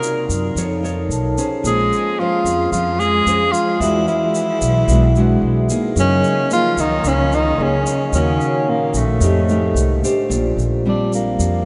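Bossa nova at 111 BPM, breezy and sophisticated, this excerpt from a longer piece features a mellow, breathy tenor saxophone up front, singing the melody in subtone with light vibrato and scooped notes before taking a short solo at 10.3 seconds. Fingerpicked nylon-string guitar, a ringing, airy vibraphone with soft mallets that adds a brief fill, a grainy egg shaker and a woody, thumpy pizzicato upright bass form the accompaniment. A bowed cello enters at 1.7 seconds in the background with expressive portamento, and the whole blend sits in a vast, echoing cathedral reverb with a dulled top end.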